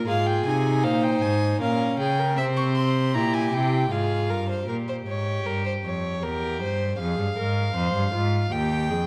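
A passage from a solemn, driving baroque-style fugue for string quartet in triple time opens with the second violin, viola and cello sounding together, played with bowed, period-style gut strings. A moment later, at 0.1 s, the upper violin takes the melody high above the ensemble, its light vibrato and reedy tone cutting through before it stops at 4.7 s. The second violin, with its nasal tone, holds a line in a middle register, while the viola's reedy accompaniment has a smooth top. Placed up front and the loudest voice, the cello anchors the texture with a rich bass. The quartet sits in a moderate scoring-stage reverb that lends the solemn counterpoint a sense of space as the music moves into a new section and continues until 9.1 s.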